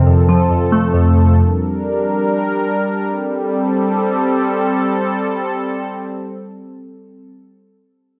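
Menacing and eerie, this short hip hop excerpt drifts in free time in A phrygian. Glassy digital keys with a sine-like tone sound only from 0.0 to 1.4 seconds, sitting up front between F2 and A3 with a fast attack, a decaying tail, chorus and a low-pass filter sweep. A sweeping, resonant pad carries sustained chords from the start until 7.3 seconds, its detuned sawtooth character bright and evolving through a filter swell, slow attack, long release and chorus. The harmony moves from F to Gm, then settles on Am7 at 3.1 seconds, where the second section begins. Light reverb lends a digital sense of space, and the master is dense and heavily limited in a modern style.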